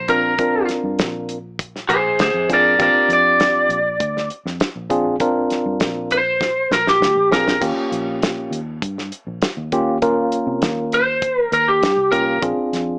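A straight-eighth soul blues groove in 4/4 sets a gritty, laid-back mood as a bright, twangy, slightly broken-up lead guitar solos up front with plate reverb over a worn, slightly out-of-tune tine electric piano with overdrive and plate reverb, a round, foam-muted fingered bass, and a dry, damped 70s drum kit that plays a fill at 6.4 seconds, the whole cut heard in a moderate studio room through a small speaker.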